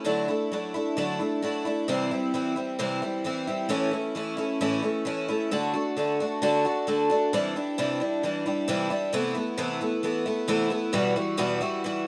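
A picked twelve-string acoustic guitar plays alone, its bright, shimmering, octave-doubled tone sitting up front with an auditorium character, in this reflective, wistful rock fragment at 132 BPM in a straight 4/4. The opening passage moves through Dadd9, C, A and D before a second section begins at 7.3 seconds, shifting to Cadd9, Amadd9/C and Emadd9. Light reverb and a rough home-demo mix give the short cut from a longer piece an unpolished, intimate feel.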